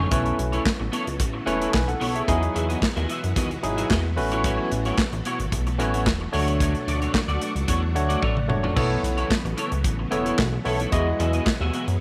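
A glossy, dark chorused synth bass sits up front with transformer saturation, driving this feel-good, danceable early-eighties boogie funk excerpt at 111 BPM alongside a punchy studio drum kit with bright cymbals and handclaps. A barky, lightly overdriven tine electric piano comps through chords like B9sus4, Emaj9, A69 and Dmaj7, while a slightly broken-up electric guitar picks a compressed riff. Shimmering vintage string-machine violins hold sustained chords in the background. The electric piano adds a fill at 7.7 seconds and the drums add one at 8.2 seconds.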